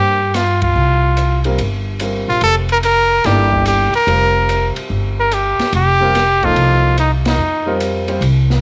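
A spiritual, searching mood runs through this short modal jazz fragment, cut from a longer piece and carried by swung eighth notes. A bright, forceful trumpet takes the melody up front, its punchy lines colored by scooped notes and light vibrato. Beneath it, a baby grand piano with a natural, short-sustained tone supplies accompaniment, heard through the soft haze of cassette tape, while a woody, growly upright bass played pizzicato sits prominently in the mix. An acoustic drum kit enters at 0.3 seconds with hi-hat, kick, ride and snare, its sound dark and smooth with a boomy kick and rolled-off top, also carrying a cassette tape character. The harmony rests on C9sus4 before shifting to F9sus4 at 5.7 seconds, the band hits accents at 0.6 and 7.2 seconds, and light reverb with studio ambience gives the home cassette recording an intimate, small-room feel.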